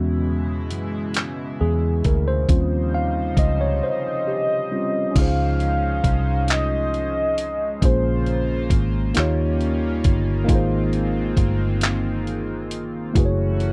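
Intimate and tender, this short slow six-eight R&B excerpt at 45 BPM opens on a worn, slightly out-of-tune tine electric piano over a shimmering pulse-width pad and a dark, foam-muted fingered bass, with a gritty sampler-style kit of thumpy kick, hi-hat, handclaps and crash arriving at 0.7 seconds, while a round, warbling horn-like synth lead with chorus and slapback echo sings from 3.9 to 8.8 seconds through lush chords such as Dbmaj9 and Ab69, all captured in a dry, close 1970s-style studio sound.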